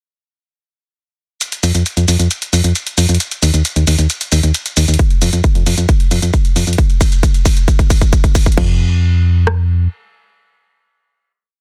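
A dense, heavily limited modern master with little reverb gives this short, complete uplifting trance piece a tight, forward sound, and its mood is soaring and euphoric. At 134 BPM in a straight 4/4, a build-up begins at 1.4 seconds with an analog drum machine playing programmed shaker, closed and open hi-hats, a backbeat and crash cymbal, its tape-warm tone re-recorded in a large room. A punchy, round FM bass with a fast attack, dark decay and sidechain pumping sits up front, galloping in sixteenth notes between Eb2 and F2. At 5.0 seconds a layered, big-room dance kit drives in with an overdriven four-on-the-floor kick and rim click, as a drum fill runs through the rest of the build. At 8.6 seconds the build gives way to a final note that closes the piece.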